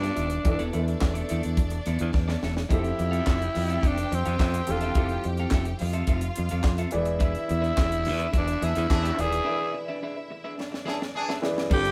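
Disco at 107 BPM with a driving, glamorous mood, led up front by a raspy, gritty tenor saxophone melody over a tight funk drum kit with handclaps and a high-tuned snare, and a punchy, growly fingered electric bass. Behind them sit a bowed violin section with intense vibrato, a picked electric guitar at the edge of break-up, and a short-sustain grand piano, all moving through E7sus4, Fmaj7 and E7 in a live-room sound with moderate reverb. A distant, loose horn section adds stabs from 8.6 s, and the band drops into a break at 9.5 s, with a drum fill from 10.6 s to 11.7 s, shortly before this cut from a longer piece ends.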